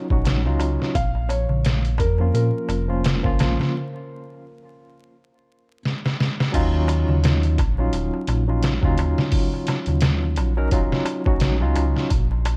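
Dark and cinematic, this trip hop excerpt moves at 86 BPM with a swung 16th-note feel, built on a gritty, pitched-down sampler-style drum kit with a thumpy kick and an up-front, rumbling detuned saw bass treated with tube saturation, while a small, crisp metal-shell darbuka sits in the background. A barky tine electric piano with tremolo and tape echo carries the Ebm9 and Bbm harmony until 12.1 seconds, and a soft, felt-muted upright piano with audible action noise plays the melody only until 5.8 seconds. A break runs from 3.7 to 6.5 seconds, ending in a drum fill, and the dry, dark production carries a layer of vinyl crackle.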